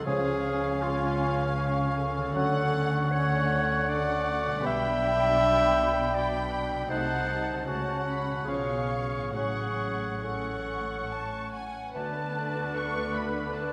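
Drenched in a wet concert-hall reverb, this short orchestral passage from a longer classical piece sounds solemn and yearning, moving in a rubato 3/4 that drifts between 67 and 81 BPM. Muted, con sordino violins carry the melody high in the background, while a second violin section sits close with a soft attack. Muted violas and cellos add a dark, veiled, lush bowed haze, and a close double bass section anchors the bottom. Among the winds, a clear clarinet stands out as the most prominent voice, joined by a pure, hollow flute with lifted highs, a warm cor anglais and a close-miked, mellow bassoon, all woven as second lines and accompaniment. A French horn section holds sustained chords in the background until 12.3 seconds, a very quiet harp rings out bright fingerpicked arpeggios, and timpani struck with hard mallets make a brief, articulate appearance only between 0.1 and 1.2 seconds. 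The harmony moves through Dmaj7, G/B and a shadowy Cdim7 before settling on F#m/A and closing on D6.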